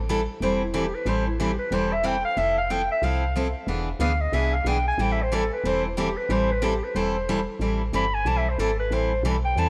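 A round, woody FM bass opens this fiery, swinging excerpt of acoustic string swing in A minor at 184 BPM, joined at once by a bright, picked steel-string acoustic guitar with fresh strings and audible finger squeak, both sitting up front. From 0.4 seconds a mellow clarinet takes the solo in jazz style, its subtone, light vibrato and scooped notes heard from a distant, roomy position over a moderate plate reverb. The harmony moves from Am7 through Fmaj7 and E7 back to Am7, settling on Am9 at 7.6 seconds as the section repeats.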